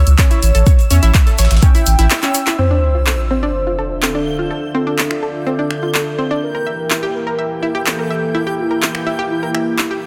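A dense, heavily limited modern master with light reverb frames this expansive, driving progressive house excerpt, where a velvety synth lead with chorus and dub echo carries the melody over round, detuned analog pluck arpeggios that pump with the sidechain, while a reversed, dreamy granular texture shimmers in the background. At the start, an up-front electronic kick and a thick, saturated sub bass push the groove alongside a deep house kit of finger snaps, handclaps and hi-hat, a grainy egg shaker and a very quiet, gritty breakbeat kit of hi-hat and snare, until the bass stops at 2.1 seconds for a short break and drum fill. At 2.6 seconds an electronic sub drop lands as a lush supersaw pad enters under a low-pass filter, its chords moving from Dm7 to Edim while filter sweeps run across both the pad and the pluck.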